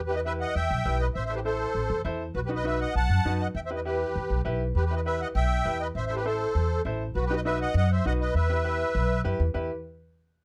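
A reedy, shimmering musette accordion carries the dark, smooth melody up front in this driving, danceable Latin fragment in E harmonic minor, taken at a brisk 200 BPM in straight 4/4 with tuning set at A4 = 437 Hz. Underneath, a thumpy pizzicato upright bass with steel strings sits close and present, while a clear, polished upright piano with a woody tone and long sustain fills in the accompaniment through a minor progression. The dry, closely miked sound keeps every detail crisp, and a second section arrives at 4.8 seconds before the piece resolves back to E minor at 8.4 seconds.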